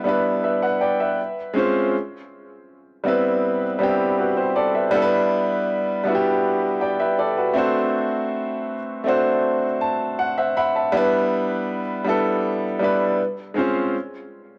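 Moody and sensual, this short R&B excerpt cut from a longer piece moves at 80 BPM in E minor, with a solo baby grand piano carrying everything from 0.0 to 14.0 seconds, ranging from G3 to B5. The piano sits up front with a clear, intimate tone, long sustain and audible action noise, colored by cassette tape and analog delay, and it plays a fill from 9.4 to 10.9 seconds. Chords drift through Em7, C#maj7, Cmaj7 and D7 in a home cassette recording with light reverb.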